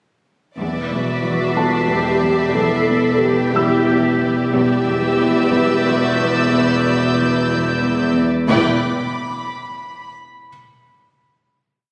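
A soft bed of sul tasto tremolo violins, floating high dissonant clusters from a third violin section, a pulsing background ostinato in the rich cellos, and deep bowed basses from a cello section and a lightly vibrato chamber double bass section open this ominous, eerie suspense film cue in E minor at 91 BPM in 3/4, joined at 0.9 s by a dark, woody viola melody and at 1.6 s by sparse single notes from a worn grand piano in the background, all bathed in a wet concert hall reverb before the strings settle on a final chord at 8.5 s.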